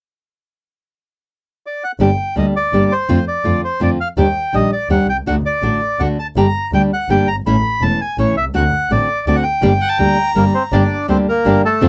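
Tango in a tense, melancholic mood, this brief cut from a longer piece moves with a rubato three-beat feel. A reedy bandoneon carries the melody up front from 1.7 seconds. At 2.0 seconds it is joined by fingerpicked nylon-string guitar accompaniment and an earthy bowed double bass, while a bowed violin adds a short second line just before a dark, very quiet chamber string section enters at 10.7 seconds with soft-attack stabs, all in a dry, close 1970s-style studio sound with light reverb.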